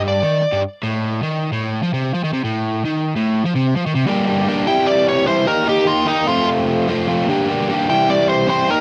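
A nasal lead guitar with a parked wah and overdrive plays a brief phrase at the start, then returns at 4.7 seconds for a solo over a dark, double-tracked, compressed overdriven electric guitar riff that sits up front, in a cool, moody rock excerpt at 149 BPM in straight 4/4 with light reverb, its chords moving from G5 and Adim into a Gm, C, Eb, F progression.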